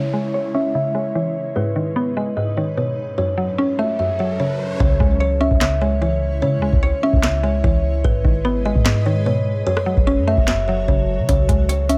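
A half-time trap groove at 148 BPM in 4/4 sets a dark, melancholic hip hop mood in C# minor, opening on a woody, hollow kalimba melody over a round, chorused FM synth pluck with a noisy edge, a blurred, evolving granular pad and electronic downlifter and riser effects under a filter sweep. At 4.8 s a booming analog drum machine arrives up front with a deep kick, crisp snare, claps and rim clicks, alongside a clean, sine-like 808-style bass. The metallic hi-hats stay muted until 11.3 s as the chords cycle through C#m, G#m and F#m in a digital ambience.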